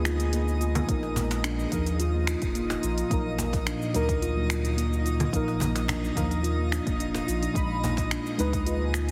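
A ringing steel tongue drum with a gritty sampler edge and tape echo plays meditative arpeggios over a round sub bass that pumps with the beat, dark detuned chord stabs, a bright, airy phaser-tinged pad and a twinkling granular shimmer, while crisp afro-pop hats, congas, finger snaps and shaker, a deep electronic kick entering at 0.9 seconds and a snappy background cajon drive this earthy, warm organic downtempo excerpt through a lush hall and heavily compressed radio-style sound.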